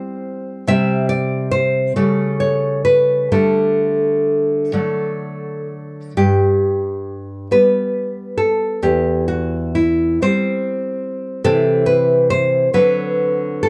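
A dark, warm production with light reverb frames this short section cut from a longer romantic piece for solo classical guitar. A single nylon-string guitar carries everything from 0.0 to 13.7 seconds, fingerpicked and placed up front, its acoustic tone warm across a range from low E2 to high E5. The feel is slow and tender, flowing in 6/8 with a rubato push and pull that lets each phrase breathe. The harmony moves from an opening C5 through A7/C# and a Dsus4 that settles onto D, then drifts to G, C/E and C before closing on a D7 at 12.7 seconds. The effect is tender and warm, like a heartfelt confession played on a single instrument.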